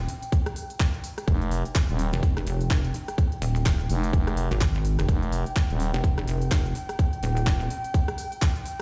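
Heard through a big sound system in a bare stone room with little reverb, this bouncy, swaggering bass house fragment at 126 BPM in F minor rides swung sixteenths, driven by a heavy, saturated pluck wobble bass that pumps against a tight, up-front electronic kick, while a garage kit adds crisp hi-hats, handclaps and rim clicks, a thick, growling FM bass with overdrive joins from 1.3 to 5.9 seconds, and a nostalgic, detuned, lo-fi pad warbles mellowly in the background.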